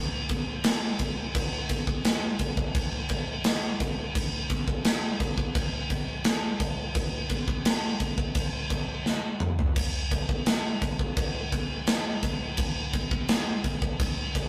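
Metal drum excerpt at 85 BPM in a straight 4/4, heavy and aggressive in mood, with a big acoustic rock kit entering at 0.3 seconds and sitting up front with a punchy kick, medium-tuned snare, toms and bright crash cymbal. The kit has an airy, polished character, and a fill between 9.1 and 9.8 seconds breaks up the groove. The sound carries little reverb and has the rough feel of a rehearsal-room recording.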